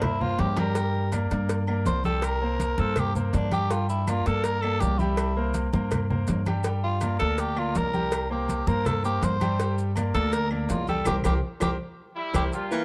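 A raspy, gritty tenor saxophone takes an up-front solo over a sunny, danceable salsa groove at 163 BPM, backed by brilliant grand piano, thumpy gut-string upright bass, and background claves, congas, cowbell, ringing timbales and agogo bells, and grainy maracas from 0.8 seconds. Drum fills open and close the passage, and a band accent marks its end as a tight trumpet section enters at 12.2 seconds and a baritone saxophone at 12.7 seconds, all in a dark production with light reverb.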